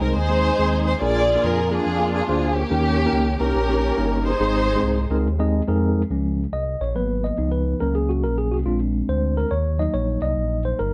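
A lush, bowed string section carries the melody at the start, its dark ensemble tone shaded with vibrato, soft attacks and a smooth top, until it drops out at 5.1 seconds. This is uptempo gospel with a swung feel, hopeful and jubilant in mood, cut from a longer piece. Underneath, a mellow, clean tine electric piano plays the accompaniment through its built-in speakers, then takes a solo from 6.1 seconds to the end. A synth bass blending sawtooth and triangle tones holds the low end with a smooth, sustained sound, gliding between notes with portamento and vibrato over a moving notch filter. The harmony moves through chords such as Bb7, Eb7, Db9 and Gb/Db before settling on Ebm, and a moderate, large studio reverb gives the ensemble a roomy ambience.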